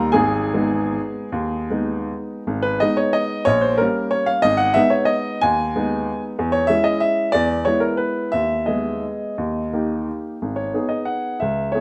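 A clear, woody upright piano opens alone, playing an elegant, nostalgic classical waltz in G# minor, in 3/4 with a rubato feel that ranges between 147 and 196 BPM, its natural tone sitting up front across a span from G#1 to A#5. The short excerpt lingers on G# minor before moving through a diminished chord, C# minor and E7 to D#, then settles back on G# minor near 10.4 seconds. Close, detailed miking captures the instrument within a moderate recital hall reverb.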